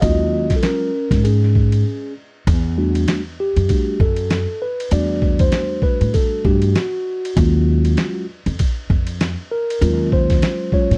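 A mellow tine electric piano solos from the start over a woody pizzicato upright bass and a muffled, pitched-down sampler-style kit with a thumpy kick, medium-tuned snare, hi-hat and ride, all three up front in a dry, close 1970s-style room, giving this swung, nocturnal jazz-hop cut a smoky feel as a brief break at 1.9 seconds gives way to the second section at 2.5 seconds, where the harmony shifts from D#m11 to Em11 before returning at 7.4 seconds.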